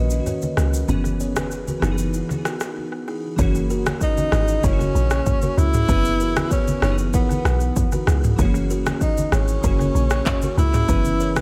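A breathy, whispered tenor saxophone enters at 4.0 s with a dark, intimate jazz-style solo, scooped notes and vibrato, over a sunny, romantic 96 BPM afrobeats groove in F# mixolydian, where a deep, round log drum bass sits up front beside an afro-pop drum kit with handclaps, rim click, shaker and toms, glassy detuned digital keys with chorus and tape echo, a buzzing woody kalimba riff, and very quiet low-tuned congas, all in an echo-heavy mix with a short break at 2.8 s before the section around F#9 and Emaj7/F#.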